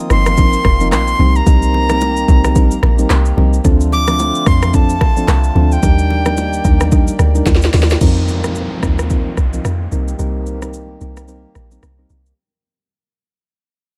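Afrobeats at 110 BPM in C dorian, this smooth, hypnotic excerpt from a longer piece rides a swung sixteenth-note groove in 4/4. An electronic afro-pop drum kit with a deep kick, sharp snare and metallic hats sits up front alongside a round, percussive log drum bass with a fast attack and dark, decaying tone. Soft electric-piano-like synth keys with chorus and a filter sweep supply gentle, full-bodied accompaniment, while a reedy hand-pumped harmonium breathes sustained chords in the background, and very quiet bongos and congas add bright hand percussion until 7.9 seconds. A breathy, bright jazz flute with vibrato and delay carries the melody high above, moving over chords of F7sus4, Cm7, Dm7 and Ebmaj7 before falling silent at 7.4 seconds. After a drum fill, the second section opens at 8.0 seconds with a downlifter as the track fades out over the returning F7sus4 and Cm7.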